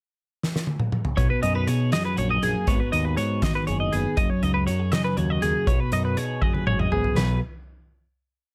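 A light reverb wraps this short, up-front recording, a playful and intricate piece of math rock and midwest emo in 6/8 at 80 BPM (dotted quarters), in B major. A loose indie drum kit opens the pickup bar with a fill at 0.4 seconds, its dark cymbals, fat snare and punchy kick sitting in a pumping studio room as it settles into a 6/8 groove. At 1.2 seconds two bright, clean, twangy twelve-string electric guitars enter together: one picks a compressed ostinato accompaniment, while the other plays a rolling fingerstyle arpeggio higher up, lightly shimmering with subtle chorus. A growling fingered electric bass, overdriven and fed both direct and through an amp, joins them with a syncopated riff. The chords move from Bmaj7 through G#m7 and F#69 to B6, and another drum fill leads into a final chord that closes the piece.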